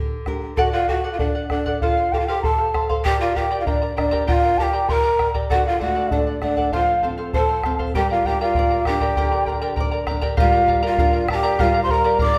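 A straight two-beat pulse in 2/4 drives this wistful, earthy Andean folk excerpt, anchored by a round, close and dry bombo placed up front from 0.3 seconds. A mellow large quena of wood carries the melody with vibrato and rolled-off highs. Beneath it, breathy cane pan pipes play a second line with tongued attacks and an audible chiff. A bright charango with double strings adds shimmering fingerpicked accompaniment, while a woody nylon-string guitar with old strings sounds briefly at the opening and returns at 5.5 seconds. The harmony moves between Gm, D and F before settling on Bb/G as a new section begins at 10.4 seconds, all heard in the long, reverberant air of a recital hall.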